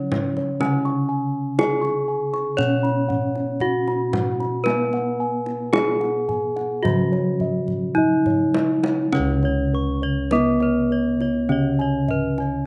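Heard from the first moment, this serene, ceremonial Javanese gamelan passage in C# slendro sets a bright, close-miked bronze metallophone melody up front, played with a horn mallet. Beneath it, a second metallophone struck with a wooden mallet carries the accompaniment, its paired tuning producing shimmering beats. Round, dark bossed gongs add arpeggios touched by a slapback echo, while deeper gongs played with padded beaters hold a mellow, soft bass line. A deep kendang, played with soft hands and sounding distant, keeps the straight 4/4 pulse at a stately 51-62 BPM and plays a fill from 7.7 to 9.1 seconds. At 9.1 seconds a new section begins as another ringing metallophone joins with its own echoed arpeggios, and the whole outdoor recording stays dry, its top end stopping at 10.5 kHz.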